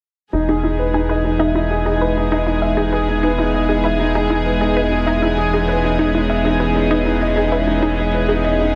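Tender and hopeful, this short electronica excerpt at 98 BPM in E major rests on an Emaj7 chord, where a soft, intimate felt-muted upright piano riff runs through a filter sweep, digital delay and shimmer reverb above floating, bowed string-section chords, a round analog bass holding a deep E1, and a lush, detuned unison pluck playing arpeggios in the background from 0.5 to 8.5 seconds, its own filter sweep, delay and shimmer set within a moderate echo-chamber reverb.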